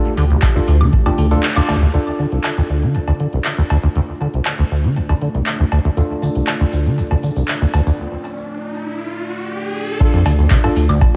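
A rubbery, resonant acid bass riff sits up front with tube saturation, lush chorus and analog delay, driving this raw, gritty acid house cut in D minor at 119 BPM, over a booming, overdriven analog drum machine with metallic hats, cowbell, handclaps and woodblock, plus a saturated sine sub bass and an overdriven electronic kick that drops out from 1.4 to 1.9 s and returns for the drop at 10.0 s. A smooth analog pad with sidechain pumping hangs in the background while a barky tine electric piano plays stabs through tape echo, both under filter sweeps from 1.9 s. A grainy tube shaker joins at 6.0 s, and an electronic riser builds through the break before the drop, all in an echo-heavy mix with light reverb.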